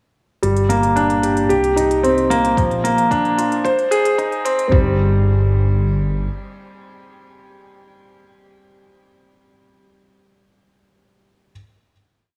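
A lush hall reverb and a high-pass filter shape the sound of this short, melancholic and cinematic piece of piano-and-strings electronica. An up-front concert grand carries an arpeggiated sixteen-step riff with short sustain and a deep low end, its notes trailed by digital delay and shimmer reverb as the harmony moves through Gm, Cm7, Bb and Ab. Beneath it, a dark, detuned saw bass rumbles and beats on sustained roots, pumping under sidechain until 6.3 s. Smooth, closed electronic hi-hats keep a restrained pulse, joined at 2.6 s by a layered, tape-toned four-on-the-floor kick while a filter sweep drives the build-up. At 4.7 s the drums stop and the chords drop away, and the piano rings out on a final note as the bass lingers beneath it.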